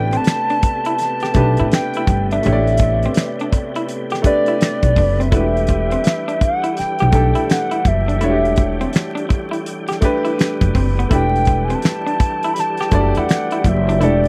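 Dry and close, this recording carries a 1970s studio character with a layer of vinyl crackle, setting a late-night, soulful R&B and neo-soul mood with a swung sixteenth-note feel in 4/4. A hollow, soft clarinet-like synth lead with chorus carries the melody high above the band, its square and triangle tones touched with a noise layer and vibrato. Beneath it, a clear upright piano with a smooth, long sustain plays the accompaniment, while a tonewheel organ holds sustained chords through chorus vibrato and a fast rotary speaker. Up front, a pizzicato upright bass sounds woody and bright on steel strings, paired with a damped 70s drum kit of fat snare, tight kick, hi-hat and finger snaps. An electric guitar through a small old amp adds a dark, slightly broken-up, compressed second line bathed in spring reverb, as the harmony moves from Am9 to Em9 at 5.3 seconds in this cut from a longer piece.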